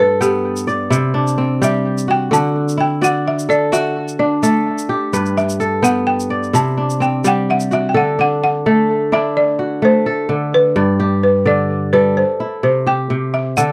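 West African traditional music for strings and xylophone, this short excerpt from a longer piece moves at a flowing, joyful 85 beats per minute in a straight 12/8, centred in D mixolydian over a cycling progression of G, C and D. The balafon carries the melody between G4 and A5, its woody, buzzing tone struck with hard rubber mallets and sounding dark and smooth, and it takes a solo through the opening 7.9 seconds. Alongside it the kora sits up front with fingerpicked arpeggios spanning G2 to G5, ringing and crisp, with a tape echo trailing its notes. A grainy, bright tube shaker adds close percussion from 0.2 to 7.8 seconds, then returns only briefly at 13.6 seconds. The recording has the dry, close feel of a 1970s studio with a touch of light reverb, and a second section begins at 7.9 seconds as the chords turn back to D.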